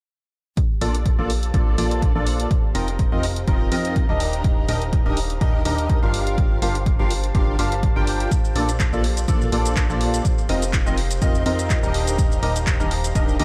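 Energetic yet bittersweet, this piano house excerpt moves at 124 BPM with a lightly swung groove: a dry, punchy electronic kick and an analog drum machine with handclaps, hi-hat and shaker drive it from 0.6 seconds. A hollow, organ-like stab carries the riff up front with ensemble chorus and a diffuse ambient delay, while a plucky, funky analog bass with a fast-attack, decaying filter pluck sits beneath, both pumping against the kick. In the background an airy, breathy pad with chorus and a slow attack drifts over a cycle of Bbmaj7, Ebmaj7 and Gm7, all set in light digital ambience.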